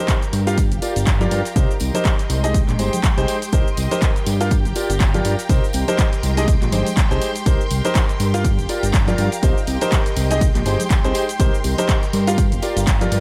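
Soulful and energetic, this excerpt of piano house moves at 122 BPM in 4/4 with a 16th-note swing and sits in C minor, cycling through Gm7, Cm7 and Abmaj7 chords. A clear concert grand piano carries the riff with deep bass and long sustain, touched by tape echo and pumping against the kick. Up front, a punchy electronic kick with a tape-warm edge anchors the groove, joined at 0.3 s by a fat, thick sawtooth bass with a filter sweep and fast attack that also pumps. A punchy analog drum machine adds handclaps, hi-hat and shaker, both drum parts re-recorded in a large room, while tambourine and congas played with soft hands sit in the background. Behind them, a shimmering vintage string machine holds sustained violin chords with ensemble chorus, and a dark, woody symphonic string section adds a lush, distant bowed texture with vibrato. The overall sound is dry, with little reverb.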